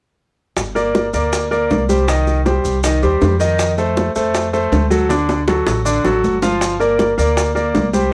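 Lightly reverberant and recorded at home on cassette, this driving, fiery salsa fragment puts a brilliant, tape-tinged grand piano up front, playing accompaniment from 0.7 seconds over a Gm, Cm, F7, D, Gm7 progression, above a woody, thumpy pizzicato upright bass with gut strings, round, low-tuned and saturated bongos played with soft hands, ringing congas sitting in the background, and grainy, distant maracas, with a drum fill from 5.1 to 6.6 seconds.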